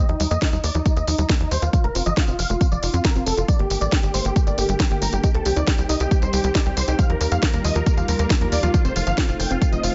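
Emotional and soaring, this uplifting trance excerpt is built on a huge, detuned supersaw lead carrying the melody over tight, nasal sequenced arpeggios caught in a filter sweep, while a punchy sawtooth sequencer bass drives beneath, all three pumping against the sidechain. An up-front, overdriven electronic kick pairs with a house kit of cracking snare, bright hats and tambourine, and from 3.5 seconds a lush, warbling pad with a vintage, chorused glow fills in sustained chords behind. The chords move from Ebsus2 through F, Gmadd9, Cm and Ebadd9 to F7, with light reverb and a top end that stays soft.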